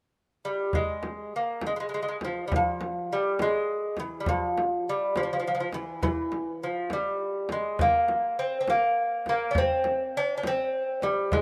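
Persian modal ensemble music in F avaz esfahan, soulful and hypnotic at 68 BPM in a straight 6/8, cut from a longer piece: a bright, delicate fingerpicked lute with doubled gut strings, some octave-doubled, carries the melody up front from 0.4 seconds, joined at 0.7 seconds by a deep, large frame drum played with hard hands in a small room, all set in a moderate plate reverb within a rough home-demo mix marked by lossy compression artefacts.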